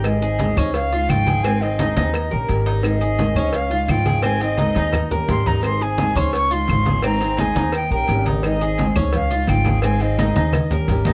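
An airy silver concert flute carries the melody from 0.1 s, its soft attack and gentle vibrato floating over a sunny, relaxed Cuban son and guajira groove in Ab major at a brisk 172 BPM in 4/4. Up front, a dark, thumpy upright bass is plucked on steel strings, while a bright, fingerpicked nylon-string guitar with fresh strings supplies classical-style accompaniment. A warm Cuban tres adds picked arpeggios with a metallic ring from its doubled strings. In the background sit saturated, low-tuned congas with a thin skin, a tight high-tuned cowbell, grainy maracas and close, woody claves. The harmony cycles steadily through Ab, Dbadd9 and Eb7, with fills at 4.6 and 10.5 s, and light reverb rounds out this short cut from a longer piece.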